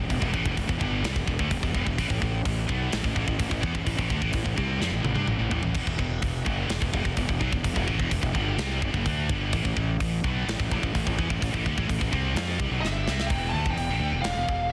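A scooped, double-tracked high-gain guitar drives this relentless, epic heavy metal excerpt in E minor at 127 BPM, its bright distorted riff moving between E minor and A5 over a growly fuzz bass and a tight, gritty metal drum kit with a medium-tuned snare and a tight kick, all sitting up front in a small room. The drums break into fills around 4.8 and 12.8 seconds, and at 12.8 seconds a dark, high-gain lead guitar enters with a short melody high in its range, shortly before the riff returns to E minor. The master is dense and heavily limited, and the clip is cut from a longer piece.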